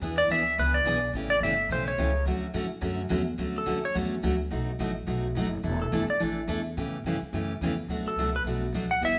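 Playful and swinging, this western swing country excerpt features a twangy lap steel guitar carrying an up-front slide solo melody with volume swells from 0.2 seconds, over a bright, picked dreadnought acoustic guitar and a woody, thumpy pizzicato upright bass, all played live together in one large, wet-sounding studio room with a softened top end.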